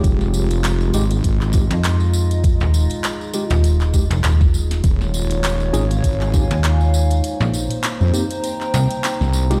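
A snappy, metallic slap-like FM bass with tube saturation cuts in at 1.7 s over a heavy, saturated wobble bass in this funky, gritty glitch hop excerpt at 100 BPM in F minor with a swung 16th-note feel, where an overdriven, knocking electronic kick drives until 6.5 s beside a pop drum kit of handclaps, hi-hat and deep snare, a jingly tambourine, a worn, slightly out-of-tune tine electric piano playing stabs through tape echo, and a moody, nasal analog pad and a nostalgic, warbling tape-like pad pumping under sidechain, the whole mix sounding through a bare stone room's reverb as the chords move from Fm9 to Eb9sus4 to Cm7.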